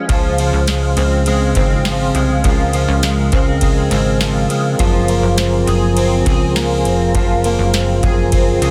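Light reverb surrounds a dense, heavily limited modern mix in this short, blissful dream pop fragment, cut from a longer piece and moving at 102 BPM in a straight 4/4 in Db major. A percussive tonewheel organ holds soft, flute-like sustained chords through chorus vibrato and a slow rotary speaker, while a fingerpicked twelve-string acoustic guitar sits up front with boxy, shimmering, octave-doubled arpeggios colored by analog chorus and tape echo. From 0.1 seconds a plucky analog bass adds punchy, funky sawtooth and pulse-wave notes with a fast attack and a decaying filter pluck. A booming analog drum machine joins at the same moment, its deep kick, crisp snare, ride cymbal and tambourine sounding up front and tape-warm. The harmony rests on Dbmaj7 before shifting to Gbmaj9#11 at 4.8 seconds, keeping the dreamy mood afloat.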